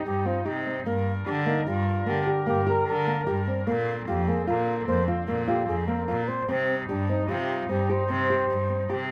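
Pulsing in a straight 7/4 at 149 BPM, this urgent, hypnotic fragment of contemporary chamber music in C minor sets a breathy, jazz-style flugelhorn melody with scooped notes and light vibrato over dark, thumb-plucked flamenco guitar arpeggios, a clear, earthy bowed cello carrying the bass up front, and softer sustained chords from a warm classical woodwind section, all cycling through Cm, Gm and Bbadd9 in a close, detailed and nearly dry sound.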